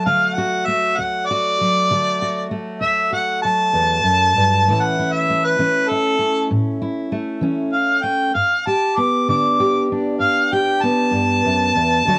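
A mellow harmonica with light vibrato, soft attacks and scooped notes leads this swaggering, laid-back acoustic country blues fragment in 12/8 at 65 BPM in D major, soloing in a jazz style with a distant, roomy plate-reverb sheen over fingerpicked steel-string acoustic guitar accompaniment through changes from D to A at 4.7 seconds and G at 8.4 seconds, all caught in a small booth on a home cassette recording with a tape-worn character.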